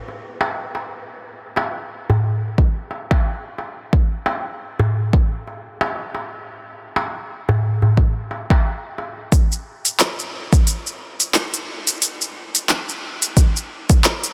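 A crisp, deep metal-shell darbuka, played with soft hands and captured in a live room, opens this hypnotic, earthy downtempo fragment from a longer piece, sitting up front at 89 BPM in 4/4 with a 16th-note swing. A punchy, layered electronic kick, re-recorded in a small room, joins at 2.6 seconds and sits forward in the mix alongside the hand drum. The darbuka stops at 9.1 seconds, and at 9.3 seconds the second section brings in an organic electronic drum kit of handclaps, smooth hi-hats and shaker, treated with overdrive and also placed up front. The kick carries on until 14.0 seconds, anchoring both sections. Light reverb surrounds the parts, and the dense, heavily limited modern master gives the whole a produced finish.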